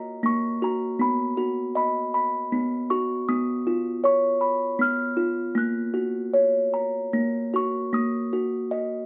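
A lone music box opens this short children's lullaby fragment, playing solo from 0.0 to 9.1 seconds in triple metre with a loose, rubato feel. Its tone is delicate and tinkling, plucked and mellow, with the fuller body of a large box, and it sits up front in the sound. It is slightly out of tune, which adds a homespun, sleepy charm to the tender mood. The harmony moves from F#6 to B, then C#7 and F#, before the opening phrase returns at 7.9 seconds on F#6. A moderate small-room ambience gives the soft playing a close, intimate setting, and the passage is cut from a longer piece.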